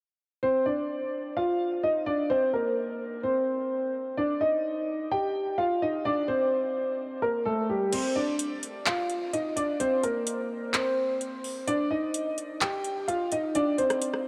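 Soaked in a huge, dreamy reverb, this brooding, hard-hitting trap cut moves at 128 BPM in a half-time feel, built on a cycle of Cmadd9, Bbsus2 and Cm. A dark, mellow grand piano with long sustain carries the melody up front from 0.4 seconds, colored by analog chorus, a low-pass filter and a diffuse ambient delay. At 7.9 seconds an electronic, overdriven trap kit arrives with metallic hi-hats, handclaps, rim clicks and crash, roughened by vintage 12-bit sampler grit and a small-room character.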